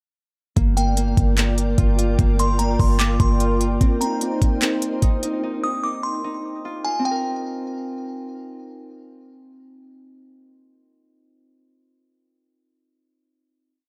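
A fingerpicked Celtic harp rings out looping eighth-note arpeggios through a low-pass filter and delay in this hazy, ethereal atmospheric cloud-rap piece in C minor at 148 BPM with a half-time feel. From 0.6 s it plays alongside a sparse, tape-warm electronic R&B kit up front, with knocking kick, smooth hi-hat and handclaps, and long, boomy sine 808 sub-bass notes that follow the kick. A dark, glassy FM pad with ensemble chorus and slow attack sits beneath, and a delicate, tinkling tine bell plays a sparse looping melody with chorus and delay, all in a lightly reverberant space. The music moves through Gm7, Cm7 and F5 before settling on a final Cm7 chord at 7.1 s, and the harp carries on alone after the bell stops at 8.2 s.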